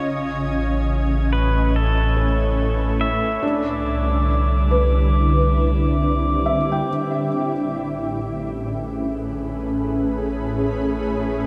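Serene and luminous, this 70 BPM ambient fragment drifts between Amaj7 and Cadd9, with a shimmering, ethereal pad of granular, detuned sine tones and a round, deep analog bass sitting up front for the full 11.5 seconds, while a soft, felt-muted upright piano with audible action noise fades in through its arpeggios, a clean, compressed pedal steel guitar sings a fingerpicked slide melody with volume swells until 6.0 seconds, and a glassy, pure glass harmonica adds high texture, the whole piece set in a huge, wet reverberant space.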